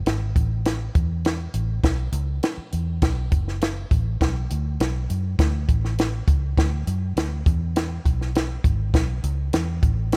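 A dry, close recording with little reverb carries this short, driving cut from an uptempo 1960s-style soul piece at 101 BPM in a straight 4/4. A compact cocktail drum kit, heard from 0.1 seconds on, sits up front with a punchy kick, a high-tuned snare and hi-hat in a tight, natural booth sound. Beside it, a vintage muted fingered electric bass, dark, round and foam-muted through an amp, holds the low end between F#1 and F#2 for an urgent groove that runs through all 10.2 seconds.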